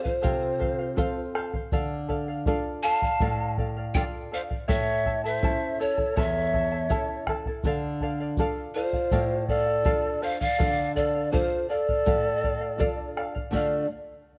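Melancholic yet festive, this excerpt of Andean folk moves at an unhurried 81 BPM in 4/4 with a straight feel, set in D minor and tuned slightly sharp at A4 = 441 Hz. A bamboo pan flute carries the melody up front, its hollow, airy tone marked by a crisp chiff on each attack and gentle vibrato, though it also carries a slightly distant quality. Beneath it, a large wooden quena plays a second line, end-blown and tongued, with an expressive, mellow voice and vibrato of its own. The charango's fingerpicked double strings shimmer, some doubled at the octave, while a full-bodied classical nylon-string guitar fills the low end, its fingerpicking bringing out an audible finger squeak. A deep, dark bombo with a vintage, band-limited character sits prominently in the mix, joined from 0.2 seconds by a grainy, bright tube shaker that sounds as if played in a small room. The chords move from F to Dm, then A and back to Dm, captured with close, detailed microphones and a light reverb.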